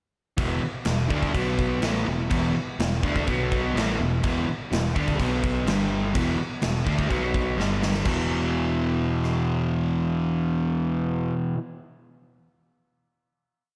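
From 0.4 s a sludgy distorted guitar up front and an overdriven hollow-body semi-hollow guitar in the background play a swaggering, energetic hard rock power-chord riff at 126 BPM on E5, B5 and G5, doubled by a fuzz picked electric bass in driving eighth notes and pushed by a big rock drum kit with punchy kick, medium-tuned snare, rim clicks and bright crashes, until a drum fill at 7.6 s leads into a final E5 chord at 8.1 s that rings out in a lush hall reverb with a big arena sound.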